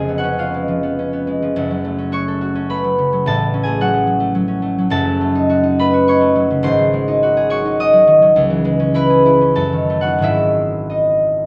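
A lone concert harp opens on a C#7 chord over E#, its plucked strings ringing out close and up front in this gentle, mysterious classical fragment cut from a longer piece. The harp carries the whole performance as a solo, its fingerpicked notes spanning from a deep E#1 up to a bright D#6. The music moves in three beats to the bar with a rubato feel, so the pulse bends and breathes rather than holding strict time. The harmony drifts from F#m through a D#m7b5 over F# to G#7, settling on C#m at 8.4 seconds before a D#dim over F# and a closing G# leave the phrase hanging. Detailed close microphones and a light touch of reverb give the instrument a warm, intimate presence that suits its gentle air of mystery.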